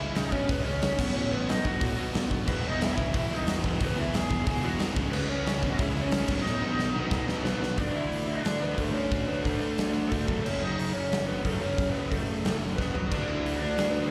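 Rebellious and upbeat, this punk rock excerpt charges along at 180 BPM in a straight 4/4, heard as a live gig through the venue's PA with the ambience of a recital hall. A dark, lo-fi lead guitar through a small cranked amp carries the melody with overdrive and slapback echo, while a growly fuzz picked bass drives the low end. Behind them, a bright distorted guitar and a sludgy overdriven guitar, the latter entering at 2.5 seconds, both play riffs with slapback echo, and a very quiet double-tracked overdriven guitar adds a further riff that drops out at 7.6 seconds and returns at 13.1. The big rock drum kit sits up front in a bright stone room, with a punchy kick and medium-tuned snare, crashes, hi-hat and toms, and a fill leads into the second section at 7.8 seconds. There the band shifts to a half-time feel as the chords move from C#m, B and E to D5 and F#m.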